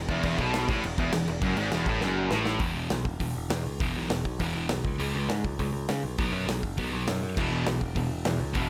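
Punk rock excerpt at a driving 202 BPM in straight 4/4, centered on E major, with an energetic, rebellious mood. A sludgy distorted guitar with a warm, overdriven picked tone carries its riff through the whole clip, joined at the start by a tight, double-tracked distorted guitar and a bright overdriven electric guitar, both sitting in the background. The tight and overdriven guitars drop out at 2.6 seconds, after a drum fill, when the passage shifts into power-chord movement from E5 through C#5 and B5, and the overdriven guitar returns at 7.4 seconds. Underneath, a bright, growly picked electric bass played direct holds down the low end throughout. The big acoustic drum kit sits up front in a studio room, with a boomy kick, a medium-tuned snare, hi-hat and bright crash cymbals, all wrapped in light reverb.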